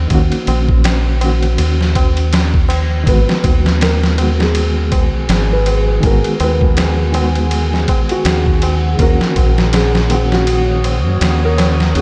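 Hypnotic and melancholic, this trip hop excerpt drifts at 81 BPM in G# minor, with a gentle swing on the sixteenths and chords moving from D#m7 to G#m7 and back. An up-front, sampler-style drum kit sets the pulse with a thumpy kick, a medium-tuned snare and ride cymbal, its pitched-down, compressed sound gritty and tape-warm, while a low-tuned acoustic tabla with a short ring sits far back in the room. Beneath them, a deep dub fingered electric bass lays down a round, dark line, thickened by tube saturation. A reedy, clean electric piano carries the accompaniment through tremolo and tape echo, and at 3.1 seconds a soft, felt-muted upright piano enters in the background with a mellow, intimate melody, also trailed by tape echo. From 4.7 seconds a moody ambient pad with a slow attack and long release adds chorused sustained chords, and a huge reverb with a 7.0-second tail soaks the whole mix in a dreamy haze.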